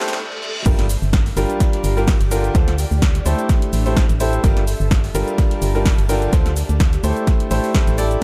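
Piano house at 127 BPM in G dorian with a bittersweet, energetic mood, where a clear, woody upright piano riff with sidechain pumping and tape echo rides over Am7, Gm7 and Dm7 chords, joined by a punchy analog drum machine with cabasa, hi-hat, snare and crash, a very quiet brushed jazz kit, an ethereal, airy pad, and a background riser and reverse cymbal that lead into a brief stop before the drop at 0.7 seconds, where a background impact lands and a hollow, dark, organ-like FM bass and an up-front electronic kick arrive in an echo-heavy small-room mix.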